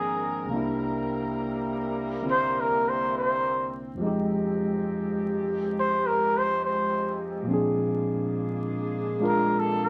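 A slow 69 BPM swing in 4/4 carries this late-night, intimate jazz excerpt. A breathy trumpet takes the solo up front, smooth on top with light vibrato, over a barky, clean tine electric piano and a mellow, distant saxophone section holding sustained chords through changes from Abmaj9#11 and C7 to Fm9 and Bb7. A wet studio reverb and a bed of vinyl crackle frame the whole passage.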